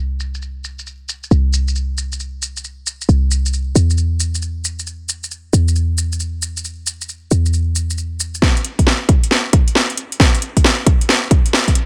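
A tight, sine-based 808-style bass with a noise layer, fast attack and sidechain pumping opens this late-night, soulful two-step UK garage fragment at 135 BPM, joined at 0.2 seconds by a tape-warm house kit of metallic hats, shaker and cracking snare swung on the 16ths, before the bass stops at 8.4 seconds and a punchy electronic kick arrives for a build-up and drum fill, with little reverb and every part sitting up front.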